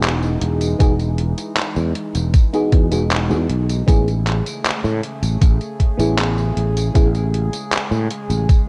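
A thumpy, sampler-style electronic kick sits up front from 0.8 s in this faded, dreamy vaporwave excerpt at 78 BPM in A lydian, shifting from Emaj7 to Amaj7 at 3.9 s. A bright, growly fretless bass sustains beneath a round, vintage FM electric piano with subtle chorus and tape echo, which drops out at 7.1 s, while a nostalgic, lo-fi sawtooth-and-triangle pad warbles through slow-attack chords with chorus and its own reverb. A detuned 8-bit drum machine adds handclaps, hi-hat and tambourine under gated reverb, and the recording carries a light reverb and a cassette-tape character.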